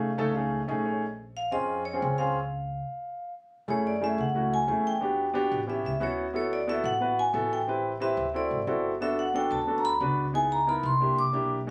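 A ringing, metallic vibraphone played with medium hard mallets and its motor off carries the melody in this fiery, sultry jazz excerpt, cut from a longer piece, over a straight 4/4 feel. An intimate grand piano with audible action noise accompanies it, opening with a fill and then joining a stop from 2.4 to 3.7 seconds, while a woody, growly pizzicato upright bass sits lower in the mix. The phone recording in the room has studio ambience, light reverb and compression, and the harmony moves from an altered F7 through rich ninth and seventh chords.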